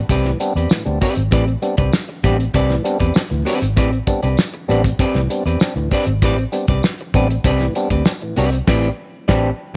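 A straight 4/4 funk groove with a funky, sly mood, cut from a longer piece and resting on a single Am11 chord. Cloth-damped, thuddy drums with a fat snare, tight kick and dark cymbals sit up front beside a round, foam-muted vintage fingered bass. A clean, hollow-bodied semi-hollow guitar plays accompaniment while a fat tonewheel organ adds stabs through a slow rotary speaker. A close, dry, jingly tambourine rides along until 8.5 seconds, and the band hits an accent from 8.7 seconds to the end, all in a small room.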